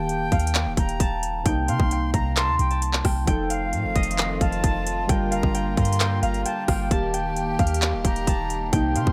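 A bright, ringing Celtic harp melody with digital delay leads this eerie, melancholic half-time trap excerpt at 132 BPM, alongside an airy silver concert flute second line with its own delay, mellow, warbling lo-fi synth keys with chorus and a deep, boomy, clean 808-style bass, while an overdriven trap drum kit with a hard-clipped kick, metallic hi-hats, handclaps and rim clicks sits up front and a chamber string section adds earthy, bowed sustained chords with light vibrato from 3.3 seconds.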